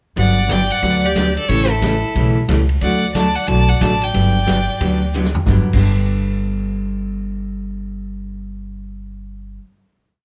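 Swinging at 181 BPM in 4/4 with a two-beat upright bass of woody, growly pizzicato roots and fifths with walk-ups, this short, playful, down-home western swing piece in G major pairs a clear, smoothly bowed lead fiddle with a richer second fiddle's harmony line mostly in thirds until 5.1 s, over dark, clean four-to-the-bar archtop guitar and an acoustic vintage drum kit with dark cymbals, backbeat and ride pattern that fills at 5.1 s before the guitar and bass hold a final G chord to 9.6 s in light reverb.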